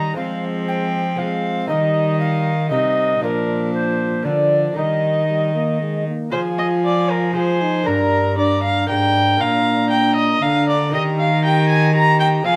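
A small period consort starts together at once in this rustic, courtly dance in triple time, a short cut from a longer piece. A mellow alto recorder carries the melody with a woody, pure tone, a crisp chiffing attack and vibrato, set at a slight distance. A warm viola plays the second line with a gut-string, reedy sound and a smooth top, one bowed player placed up front. A bowed cello gives a rich, gut-strung bass with light vibrato, while a solo trombone adds mellow accompaniment and a fingerpicked lute sits delicately in the background with its double strings, some of them octave-doubled. The harmony moves through minor and major chords, and the phrase starts again at 6.3 s, all in a moderate stone-room reverb.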